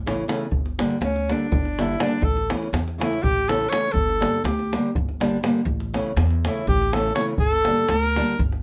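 A woody pizzicato upright bass opens this fiery, restless Balkan wedding-band piece in 7/8 at 245 BPM (eighths), joined almost at once by small, fingerpicked nylon-string guitar and a tight davul. From 1.0 seconds a warm tenor saxophone takes an up-front solo in a classical style, weaving through G dorian sharp4 as the harmony swings back and forth between A and Gm. The band plays live together in one room, wrapped in a wet studio reverb, in a passage cut from a longer piece.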